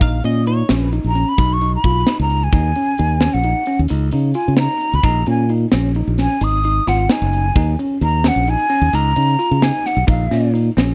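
A breathy, hollow jazz flute carries the melody as a solo through this tense, brooding passage of progressive instrumental music, its soft attack, vibrato and lifted highs sitting up front between F5 and Eb6 until 10.5 seconds. The band moves in a straight 11/8 at 262 BPM counted in eighths, in Bb phrygian, with chords shifting from Bbm through B, Ebm7, Db, Ab5 and Eb5 before coming back to Bbm. A bright, growly fingered electric bass punches forward in the low register, while a tight metal drum kit of kick, snare and hi-hat fills a big, pumping room, its medium-tuned snare and tight kick placed close to the listener. A bell-like, clean tine electric piano plays arpeggios in the middle register, and a picked, compressed twelve-string electric guitar adds a brief second line only in the opening 0.9 seconds. A grainy, saturated tube shaker sits very quietly underneath, and a small room ambience surrounds this section cut from a longer piece.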